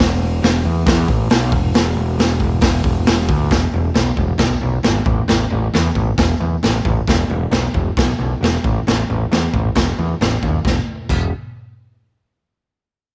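Garage rock in a rowdy, raw mood, this excerpt drives along at 134 BPM in a straight 4/4, tuned to A4 = 441 Hz. A growling, overdriven picked electric bass sits up front, dark and round, while an acoustic drum kit with a punchy kick, medium-tuned snare, dark cymbals, hi-hat and toms sounds gritty and saturated in a small, pumping room with a rolled-off top. Both parts play from the start, the arrangement shifts at 3.5 and 10.7 seconds, and light reverb colours the whole mix.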